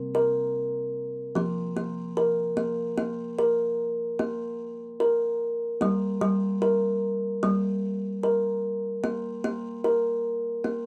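Gentle and calm, this short excerpt of meditative world music moves at 74 BPM in 4/4 with a light swing, built around a solo kalimba that plays from start to finish across a range of F3 to Bb4. The thumb-plucked tines sound woody and ringing from a hollow box, sitting up front in a small, boxy booth with a brief wet ambience. The harmony touches Bb5 at the opening, moves into a chordless stretch at 2.6 seconds, arrives at G minor at 5.8 seconds, and returns to chordless playing at 9.0 seconds.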